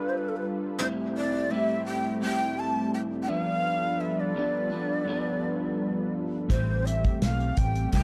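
A lightly swung 4/4 pulse at 84 BPM carries this mellow, lonely fragment of indie bedroom pop in A minor, tuned to A4 = 438 Hz. A breathy bamboo shakuhachi leads the melody up front, its crisp, chiffy attack and unsteady vibrato colored by analog chorus and tape echo. Alongside it, an electric guitar through a small old amp plays slightly broken-up, compressed accompaniment with a warbly pitch drift. A smooth, detuned analog pad holds sustained chords as the harmony moves between G7 and Am7. At 6.5 seconds an airy acoustic drum kit played with bundle sticks enters with a punchy kick, alongside a round, foam-muted fingered electric bass and glossy retro synth keys with cassette-tape grain in the background. The production is dark and warm, set in a moderate studio reverb.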